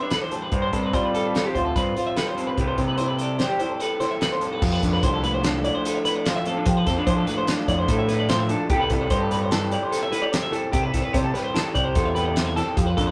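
Math rock with a midwest emo edge, this intricate, playful excerpt moves at 147 BPM in a straight 5/4, centered on C major. An electric guitar through a small old amp sits up front with a dark, slightly broken-up, lo-fi tone, carrying the accompaniment, while a bright, twangy twelve-string electric guitar spins clean, compressed arpeggios in its upper register. A loose indie drum kit joins at 0.1 seconds, with a punchy kick, fat snare and dark cymbals across hi-hat and crash, placed up front in a pumping studio room. At 0.5 seconds a growling picked electric bass arrives, overdriven and warm, blending direct and amped sound. The harmony drifts through colorful chords such as Em7, G7sus4 and Cmaj7 before shifting into a new passage at 4.6 seconds built on Fmaj13 and later C6. The whole take has the rough feel of a rehearsal-room recording, with a moderate small-room reverb around the players.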